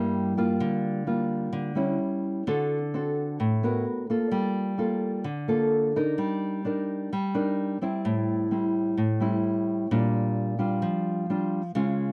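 Bossa nova at 129 BPM in a straight 4/4, this short excerpt, cut from a longer piece, carries a sophisticated, romantic mood. A solo nylon-string guitar, thumb-plucked and small in tone, sits up front for the full 12.1 seconds, moving through rich harmony from a rootless C7 through Gm9 and Am7 to a closing Bb6. Light reverb touches the guitar within a dry, close recording in a 1970s studio style.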